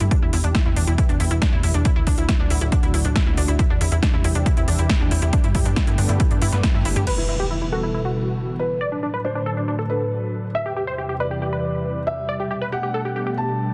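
A silky analog string pad, pumping with the sidechain, plays from the first moment of this driving, euphoric uplifting trance excerpt at 138 BPM in E minor, together with lush detuned unison pluck arpeggios trailing delay, a tight, wave-folded sequencer bass, a punchy up-front kick and an overdriven big-room kit of snare, crisp hi-hat and crash. At 7.1 s an electronic impact marks the change: the pluck, bass and drums give way to an up-front supersaw stab melody under a filter sweep, while a soft, boxy felt-muted upright piano adds a second line through digital delay. Beneath it all the chords cycle through Em, D, C/E and Gadd9 in a dense, heavily limited modern master with digital ambience.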